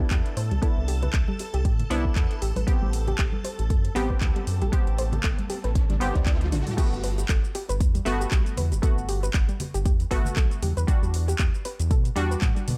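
Relaxed and sunny, this deep house excerpt at 117 BPM in G major swings its 16ths over a punchy, up-front electronic kick, a house kit with metallic hats, handclaps, shaker, toms and crash, background bongos and congas struck with hard hands, and a deep, round analog bass, while muted, detuned dub chord stabs with cassette grit and soft, warbling pluck arpeggios with 12-bit sampler texture pump to the sidechain and trail tape echo, a silky string machine hovers until a background riser and drum fill lead into the drop at 6.8 seconds, the harmony moving from Cmaj7 and Am7 to Gmaj9 and Em7 with little reverb.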